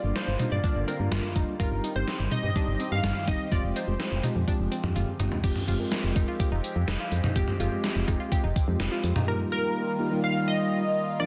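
Synth-pop at 125 BPM with a bright, nostalgic mood, this short cut from a longer piece sets an up-front, punchy detuned polysynth comp carrying the melody through chorus, digital delay and shimmer reverb over a mellow tine electric piano, a swirling phased analog pad holding sustained chords, a nasal analog pluck tracing arpeggios in the background, a round, dark FM bass and a thumpy gated 80s digital drum machine with cowbell, toms and a gated-reverb snare that fills at 5.0 seconds before the drums and pluck drop out at 9.3 seconds, as the comp returns over an Ebadd9 chord in a dense, heavily limited modern mix.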